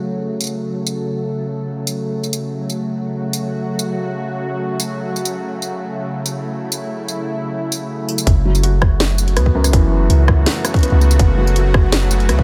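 A nasal, string-like drone with a slow attack and built-in reverb carries a filter sweep through the opening of this dark, cinematic half-time drum and bass excerpt, joined by cracking snare, hi-hat, rim click and tambourine from 0.4 s, until a drop at 8.3 s brings in a tight, up-front electronic kick and a deep, sine-toned 808-style bass, with a felt-muted upright piano adding soft arpeggios with delay and audible action noise from 8.5 s.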